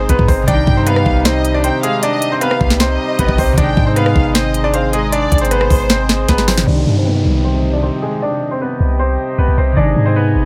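Eerie and dark, this half-time trap excerpt at 155 BPM in C harmonic minor sets a bright, worn concert grand piano melody with audible action noise and long sustain up front over fingerpicked, ringing harp, a reedy, breathing harmonium and a deep, boomy 808-style sine bass, while a lush, distant violin section adds a bowed second line until 6.2 seconds, and an overdriven trap kit with knocking kick, sharp snare and crisp hats drives the groove until a drum fill hands over at 6.7 seconds to a filter-swept passage marked by an electronic downlifter.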